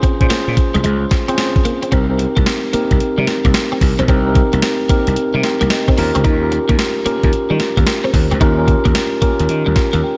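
Confident and bouncy, this new jack swing R&B passage moves at 111 BPM in 4/4 with a 65% sixteenth-note swing, shifting from Bbm7 to Cm7 at 1.9 seconds and to Eb7 at 6.0 seconds. A crisp, thumpy 8-bit drum machine with overdrive sits up front, a growly, punchy slap bass adds its own overdriven grit, a mellow tine electric piano with slapback echo carries the accompaniment, and a clean, compressed electric guitar riff with ensemble chorus and slapback echo sits in the background. A concert hall reverb lends the whole mix a big arena sound, with the top end capped at 7.7 kHz.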